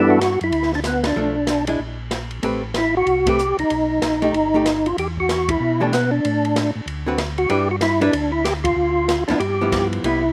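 A swinging 4/4 groove at 189 BPM drives this greasy, bluesy soul jazz organ trio excerpt in G major, cut from a longer piece, with the band hitting accents together at 1.0, 3.2 and 5.4 seconds. The lead organ carries the melody up front with a fat, lightly overdriven tone, third harmonic percussion, key click, chorus vibrato, a slow rotary speaker and slapback echo. Beneath it, a second tonewheel organ holds down the bass line with a round, mellow, clean sound through its own slow rotary speaker. A picked, compressed hollow-body archtop guitar adds accompaniment with a dark, clean electric tone and a touch of slapback echo. An acoustic jazz drum kit sits lower in the mix, with a boomy kick, a medium-tuned snare, hi-hat, ride and crash, and subdued cymbals with a rolled-off top. The harmony moves through rich colours such as Am9, Baug7 and E7sus2 before settling back on G6, and the dry sound carries little reverb.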